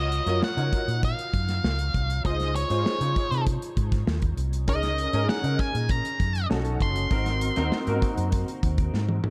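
Upbeat and glossy, this polished 1980s jazz-funk pop snippet sets a dark, up-front octave-fuzz lead guitar melody over clear grand piano chords touched with ensemble chorus, a round, punchy foam-muted fingered electric bass, and a tight, smooth studio drum kit with a rolled-off top that closes on a drum fill at 8.9 seconds, all in a dry sound as the harmony moves from Ebm9/Db through Dbmaj9 and Gb69/Db to Cb7 and Ab7.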